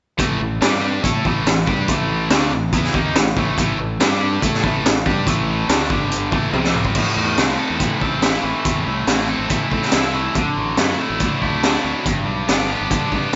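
Swaggering and gritty, this classic rock excerpt pairs a cranked stack guitar and a second overdriven electric guitar, both bright, picked and tinged with slapback echo, riffing on A5 and G5 over a fuzz-laden fingered electric bass and an up-front, saturated garage drum kit with a high-tuned snare and punchy kick, whose fill at 6.5 seconds leads into a passage through Am, Dadd9 and G, while the mix sits in a moderate concert hall with a big arena sound and a muted upper end.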